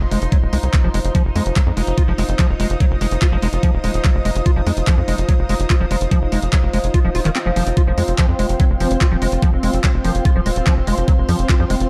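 A dark, warm digital sheen frames this intense, driving psychedelic trance excerpt in straight 4/4, cut from a longer piece. An overdriven, knocking electronic kick sits up front alongside a tight, nasal sequencer bass with a saturated sawtooth bite and fast, decaying filter plucks, while a layered drum kit adds bright hi-hats and handclaps with overdrive and studio ambience. Above them, a squelchy, resonant liquid acid bass riff carries chorus, delay and vintage 12-bit sampler grit, pumping against the kick along with a breathy, warbling pad and a bubbling stepped-filter texture of sustained chords tucked into the background with chorus and reverb. The kick drops out between 7.4 and 7.8 seconds as a very quiet electronic swell passes through. A juicy, ring-modulated blip pluck with phaser surfaces faintly as a second line, briefly near 2.2 seconds and again from 8.8 seconds.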